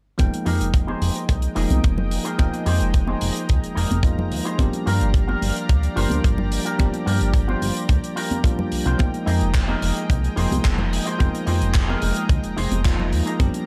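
Sensual and sleek, this short nu-disco cut moves in a straight 4/4 over Fm11 and Gm7 chords, with a tight, up-front acoustic kick and a funk kit of handclaps and hi-hat in a small room, while hard-hand congas sit close and dry in the background. A glossy, dark chorused synth bass plucks beneath a bell-like tine electric piano carrying sidechain pumping and analog delay, and a lush, warbling unison pad holds sustained chords with chorus and its own pumping. From 0.5 seconds a twangy, compressed guitar riff through an envelope filter joins in, all over faint mains hum.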